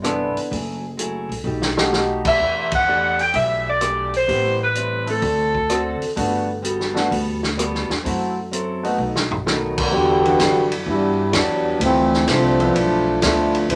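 A wet club reverb surrounds this brassy, swinging big band swing passage at 128 BPM in G major, where a vintage drum kit with dark cymbals, a woody, growly upright bass, a boxy picked archtop guitar and a polished grand piano with audible action noise back a bright, tight saxophone section from 2.3 s, before a clear, up-front trombone section takes a solo from 9.9 s as the music turns to E minor.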